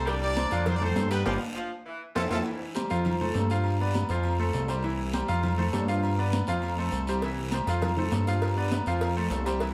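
Sunny and danceable, this brief salsa cut at 201 BPM opens with a brilliant, punchy horn section carrying the melody over a clear, roomy saxophone second line, both stopping by 2.4 seconds amid a band accent and drum fill, while a bright, intimate grand piano with audible action noise and a fat, detuned sawtooth bass with a filter sweep stay up front throughout, joined by high-tuned congas in the background, ringing agogo bells and timbales, a raspy guiro, and a tight cowbell that returns at 7.2 seconds, all set in moderate studio reverb over a C, F and G7 progression.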